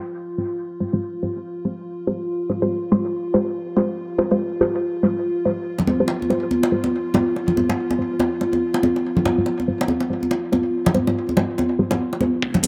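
Dark and meditative, this deep dubstep excerpt moves at 142 BPM in a swung, half-time 4/4 feel in F minor, resting on a single Fmadd9 chord. A moody, detuned analog pad holds sustained chords with a slow attack and long release, its chorus adding shimmer, while a muted, filtered dub chord stab plucks short, mellow hits shaded by phaser and dub echo. Bright, hard-handed bongos and congas arrive at 5.8 seconds, sitting up front in a small room and trailing dub echo of their own. Only in the final moments, from 12.4 seconds, do a thumpy, muffled, pitched-down kick drum and a very quiet, thick, saturated sub bass slip in, with metallic layered hi-hats following at 12.6 seconds as the fragment cuts off. A moderate spring reverb with a 2.3-second tail lends the space its dubby depth.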